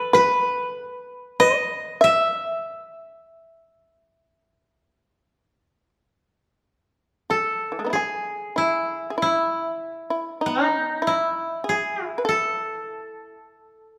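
From the opening moment, a koto and a shamisen sound together in this calm, austere piece of Japanese chamber music, cut from a longer work. The koto carries the melody up front, its fingerpicked strings bright, woody and dry, while the fretless shamisen plays a second line with a plectrum-plucked, percussive, buzzing tone. The pace is slow and rubato, hovering around 42-51 BPM in 4/4, and the music is set in E on the Ryukyu scale. At 7.3 s the piece moves into a new section, with both instruments continuing through to the end. A moderate recital-hall reverb gives the pair a natural sense of space around their acoustic sound.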